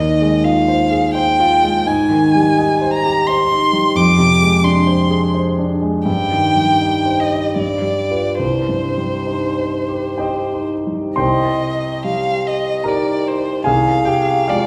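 Romantic classical music in a serene, unhurried 3/4 with flexible rubato: a bowed solo violin carries the expressive melody with vibrato, portamento and a soft attack, while a polished concert grand piano accompanies with deep bass, long sustain and audible action noise, both heard from further back in a reverberant recital hall in this warm fragment cut from a longer piece.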